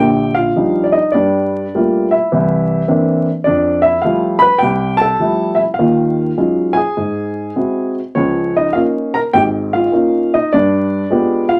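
Solo jazz with a moody, late-night air, this short passage from a longer piece features a lone upright piano, woody and intimate with its action noise audible up front, moving with a swung, rubato feel through rich extended chords such as Ebmaj9, Gm9 and Db69 before arriving at G7b9 at 10.5 seconds, all heard in a modest studio ambience along with a layer of vinyl crackle.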